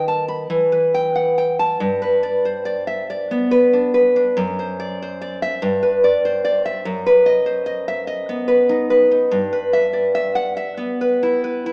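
A fingerpicked, full-bodied nylon-string guitar plays up front throughout this melancholic, passionate excerpt of a romantic solo classical piece in E minor, moving in a rubato 6/8 at 48 BPM through chords from B7/D# and Em to G, D7/F# and B/F#, its deep tone carried by moderate concert-hall reverb with a small-speaker sound.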